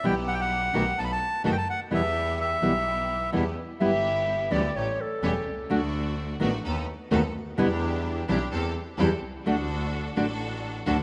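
A rough home-demo mix with a dulled top end and a moderate plate reverb frames this passionate, sultry tango fragment, taken from a longer piece at 128 BPM in a rubato 4/4. A reedy bandoneon carries the melody until 3.3 s over fingerpicked nylon-string guitar with a dark, full-bodied classical tone, an earthy bowed double bass with light vibrato, and biting, lush stabs from a distant studio string section. When the music turns from E minor to G major at 3.8 s, a clear, present solo clarinet adds a classical-style second line that ends at 5.9 s.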